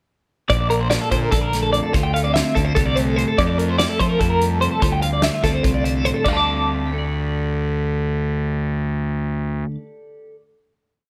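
Wistful and restless, this short math rock and midwest emo piece in 7/8 moves through lush extended chords before settling on a final chord at 6.2 seconds. One twelve-string electric guitar plays a bright, twangy, compressed picked ostinato treated with spring reverb, while a second twelve-string adds syncopated fingerstyle arpeggios high above, colored with tremolo and slapback echo, and a growly, overdriven fuzz bass sits up front, locked to the kick drum. A loose indie drum kit with dark cymbals, a fat snare and a tight kick drives the odd-metre groove until 6.3 seconds, after which the guitars and bass hold the closing chord.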